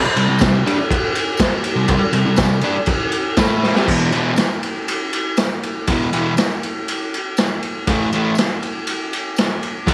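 A fuzz-soaked electric guitar leads this short garage rock excerpt, its distorted, double-tracked riff picked and compressed up front as it ranges from E2 to A4 in E minor. The mood is swaggering and menacing at a straight 120 BPM in 4/4, with the tuning sitting at A4 = 439 Hz. A raw acoustic drum kit joins at 0.2 seconds, a gritty, saturated sound from a small room with a punchy kick, a medium-tuned snare, crash and ride cymbals, and a rolled-off top that keeps it mid-forward and up front. A drum fill at 3.6 seconds leads into a new section at 3.9 seconds, where the harmony moves from C5 to E5, then to A5 at 7.9 seconds. Low in the mix, a very quiet, jingly tambourine adds a bright shimmer of close acoustic percussion, all set in a studio reverb.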